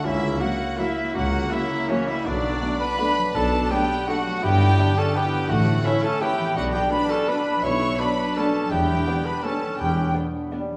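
A clear, roomy trumpet punctuates this festive, elegant classical passage in 3/4 at 166 BPM, its stabs sounding from a distance, while a rich, expressive violin section carries the vibrato-laden melody and a pure flute, a warm cor anglais and a second, lush violin section play supporting lines. Beneath them a solo bassoon and a focused viola section accompany, a ringing thumb-plucked harp spreads arpeggios, a very quiet French horn section holds chords, and a mellow tuba, a background cello section with portamento and a smooth double bass section form the bass. The beats are uneven with rubato, the sound sits in a wet reverb with small-room ambience, the timpani is barely audible around 5.5 s, and the harmony moves from F#7/C# through Bm7 and Em7/G to A, Bm and Em7 in this fragment of a longer piece.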